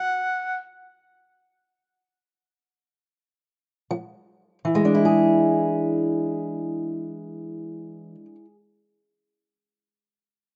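In free time that slows and halts at the start, this gritty, soulful acoustic country blues fragment in E mixolydian opens with a brief burst of amplified, overdriven harmonica with tongue slaps, scooped notes and light vibrato in a jazz style, set in plate reverb, before the dark, woody, boxy fingerpicked ladder-braced acoustic guitar on old strings returns at 3.9 seconds to settle onto an E7 at 4.6 seconds, all heard in a small room on a rough home demo.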